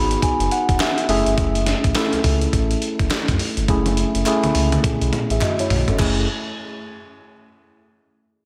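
A mellow, slightly out-of-tune tine electric piano opens this short slice of confident, slick new jack swing at 104 BPM in F# dorian, playing a fill through a low-pass filter sweep and slapback echo as a rootless C#7sus4 moves to F#m9, while a smooth, gliding sawtooth synth bass with vibrato and portamento sits beneath; a gritty, compressed sampler-style kit with a thumpy kick and fat snare swings the 16ths from 0.1 s and breaks into a fill at 3.7 s, faint, hollow group handclaps join from 0.8 s, and the whole mix sits in a lush hall reverb that gives it a big arena sound.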